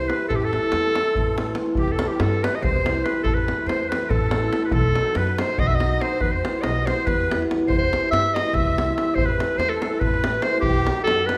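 A bright clarinet leads this Balkan wedding-band fragment in 7/8, playing up front in a classical style, with the musette accordion's reedy, airy second line tucked in the background. Cimbalom and upright bass sound from the very start alongside them, and a deep davul enters at 0.1 s. The hammered cimbalom gives ringing, shimmering accompaniment, while the pizzicato bass on steel strings sounds woody and growly beneath it. The davul is compressed and saturated. After a short opening passage, the music moves into a longer section at 1.8 s that cycles through C, Am, B and Em, and the mood throughout is virtuosic yet bittersweet. A moderate recital-hall reverb surrounds the ensemble.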